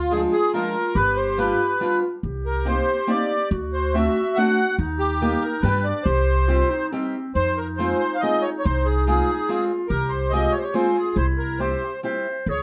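A reedy, sweet accordion with light tremolo tuning carries the melody up front from the opening of this whirling, nostalgic musette waltz, played at 141 BPM in a rubato 3/4 and cut from a longer piece; a distant, roomy clarinet in classical style adds a second line, a woody, thumpy pizzicato upright bass anchors the low end, and a dark, boxy fingerpicked parlour steel-string guitar fills in the accompaniment, all set in a moderate studio reverb as the key shifts from C minor to F minor at 7.4 seconds.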